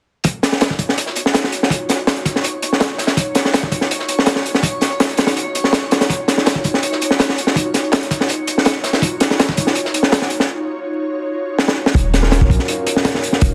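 A crunchy breakbeat kit drives this dark, raw drum and bass clip in a straight 4/4, its punchy kick, high-tuned snare and hi-hat sitting up front with a saturated, rolled-off tone, while a second, quieter breakbeat layer of hi-hat and a medium-tuned snare sits in the background until about 10.4 seconds. From about 1.1 seconds a reversed, granular texture drifts behind the drums, dreamy and slightly detuned, over an Ebm9 harmony. The music breaks at 10.5 seconds, and a drum fill leads into a new section at 12.0 seconds. Just before it, at about 11.9 seconds, a deep, sine-like 808-style bass enters with long, decaying notes, joined moments later by barky, overdriven electric piano stabs with fast tremolo, sampler grit and dub echo through a combo amp. A moderate echo chamber reverb, a dense, heavily limited master and a layer of vinyl crackle give the jungle-flavoured excerpt its grimy character.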